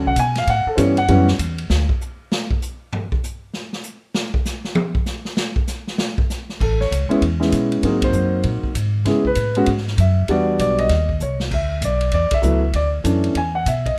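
This relaxed, swinging jazz piano trio excerpt in A major opens with a mellow, vintage-toned grand piano sounding an A9 chord over woody pizzicato upright bass, with the drum kit joining almost at once. From 1.7 seconds the drums take a solo at 196 BPM in a loping 4/4 swing. The kit sits distant and roomy in a studio room, with dark cymbals, a medium-tuned snare and a punchy kick. At 6.6 seconds the up-front piano and bass return for the second section, moving through Amaj9, G#7, C#m7 and Em9 before turning toward Cm, Dsus2 and Dmaj9. The band hits accents together, a short drum fill fires off along the way, and the passage reaches an E5 chord as the excerpt cuts off. Light reverb gives the trio a gentle sense of space.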